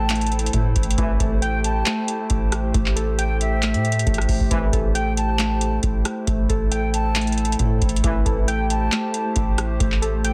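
A half-time trap groove in 4/4 drives this dark, hard-hitting hip hop excerpt, built on a booming analog drum machine up front with a deep kick, metallic hi-hats, handclaps and rim clicks. Beneath it, a long, sine-based 808-style bass sustains with a fast attack and mellow decay, while a barely audible electronic downlifter slips past at the very start. Lo-fi synth keys carry the arpeggios, their detuned pulse and sawtooth tones warbling through chorus and tape echo with a nostalgic, full-bodied character. A slow-blooming pad of square and triangle waves, touched by ring modulation and its own reverb, holds sustained chords on a single minor seventh harmony. An airy silver concert flute plays a distant second line in straight tone with crisp attacks and tape echo, and a roomy, classical-style brass section punctuates the groove with low stabs at 1.0, 4.5 and 8.0 seconds. The dense, heavily limited master sits in a digital ambience.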